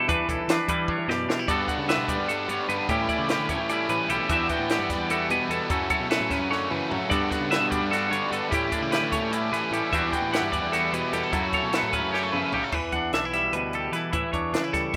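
A rough home demo in a small room carries this wistful, bright math rock and midwest emo passage in 7/8, where a twangy, up-front clean guitar and a compressed twelve-string playing arpeggios through spring reverb and tape echo ring over a fuzzy, punchy picked bass and a compact cocktail kit with dark cymbals, a high-tuned snare and several drum fills, while a double-tracked overdriven guitar riff enters at 1.5 seconds and stops at 12.7 seconds.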